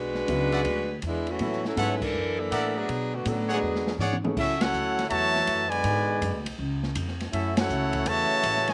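A dry sound with little reverb frames this short, energetic slice of big band swing in A major at 162 BPM, where a dark, tight saxophone section carries the melody over woody pizzicato upright bass, a boomy-kicked drum kit with dark cymbals and a background baby grand piano, while a bright trumpet section punctuates with stabs. A punchy trombone section with slapback echo enters at 3.5 seconds with a second line, and a drum fill from 3.6 to 4.4 seconds hands the tune to a clear, close-miked trumpet section that takes over the melody at 4.4 seconds as the trombones continue beneath it. Joyful band accents land along the way, and the harmony moves through colorful chords such as E9, F#7alt and G#m7b5.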